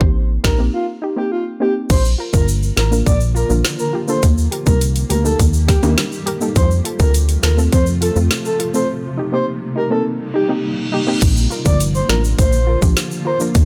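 This sunny, summery dancehall excerpt opens at 103 BPM in Bb major with an electronic island pop drum kit, tight kick, woody snare and metallic hats up front, alongside a punchy, funky analog bass and a soft, round pluck that sits dark and gentle under chorus and sidechain pumping. A breathy, flute-like synth lead carries the melody from 0.4 seconds, its soft, sustained tone shaped by chorus, tremolo, vibrato and tape echo. Egg shaker and timbales arrive at 1.9 seconds, sounding distant and acoustic as if played by soft hands in a large room, while a cloudy, evolving granular pad fills in sustained chords from 3.3 seconds, blurred and full-bodied with its own reverb and sidechain pumping. The harmony moves from Cm7 through Bb, Eb and F before circling back, with breaks interrupting the groove and an electronic reverse cymbal rising into the final section at 11.2 seconds. The mix is dry, with bass and drums leading the sound.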